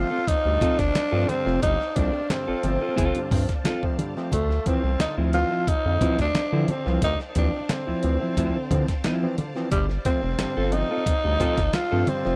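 A growling tenor saxophone sits up front from the very start, carrying a breathy, raspy melody with scooped notes and vibrato, its tone colored by tape echo, over a gritty funk groove at 89 BPM in a straight 4/4. Beneath it, a round analog bass sits up front with a deep, dark sustain, while an overdriven clav plays stringy, percussive stabs through an auto-wah from the background. A lush vintage string machine holds sustained chords behind everything else, its ensemble chorus giving the pads a full body, and a mellow electric guitar enters at 0.1 seconds with clean, fingered accompaniment. At 0.3 seconds a compressed, sampler-style drum kit arrives with a thumpy kick and medium-tuned snare, joined by low-tuned congas played with soft hands, barely audible in the mix. The harmony moves from G9sus4 to Dm9 and back, and the dry, close sound recalls a 1970s studio session, cut from a longer piece.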